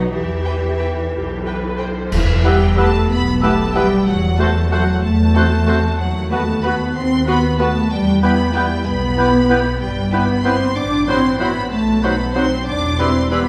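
This cinematic film cue has a playful, whimsical and sneaky character, lilting in a gentle compound metre and cut from a longer piece. A violin section carries the smooth, vibrato-laden melody high in its range, while a second, very quiet violin section adds a supporting line and a very quiet viola section fills out the accompaniment with expressive bowing. Underneath, a mellow French horn section holds sustained chords, a lush cello section sits in the background on the bass, and an up-front double bass section anchors the lowest register. At 2.1 seconds an accent lands with dark clash cymbals and concert bass drum, and just after, a clear oboe, a roomy clarinet and a hollow, soft-edged flute section join with quiet second lines while a warm bassoon adds accompaniment. The harmony winds through quirky, slightly tense turns before settling back home at 12.7 seconds. The whole ensemble sits further back in a wet, spacious scoring-stage reverb, giving the violins and violas a distant sheen.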